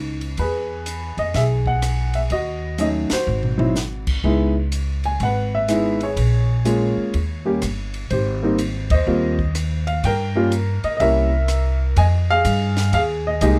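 Swinging in 4/4, this sophisticated jazz piano trio excerpt pairs a woody, natural upright piano carrying the melody with a thumpy, up-front pizzicato gut-string bass, while a dry cocktail kit with dark cymbals, a high-tuned snare and a punchy kick sits lower in the mix from 0.2 s, the band hitting accents at 3.0 and 8.8 s with a brief drum fill just after the first, all captured with close, detailed microphones and light reverb.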